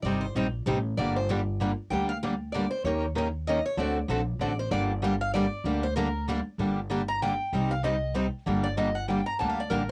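A bright, boxy parlour steel-string guitar takes a virtuosic picked solo through this swinging cut of jazz manouche in 3/4, over two picked steel-string guitars comping with audible finger squeak and a woody, thumpy gut-string upright bass played pizzicato, with the guitars carrying a cassette-tape grain and the whole home cassette recording sitting in light reverb.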